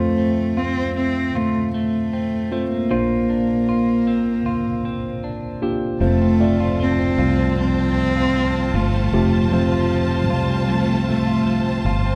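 A tender, emotional pop ballad in F major at 77 BPM, cut from a longer piece, where a dark, woody bowed cello carries the melody up front with vibrato over a worn, slightly out-of-tune tine electric piano and picked arpeggios from a clean, compressed electric guitar. At 6.0 seconds a lush string section enters with sustained, expressive chords alongside a round, punchy fingered electric bass. The chords move from F to Bbadd9 and back to F, all set in the moderate reverb of a recital hall.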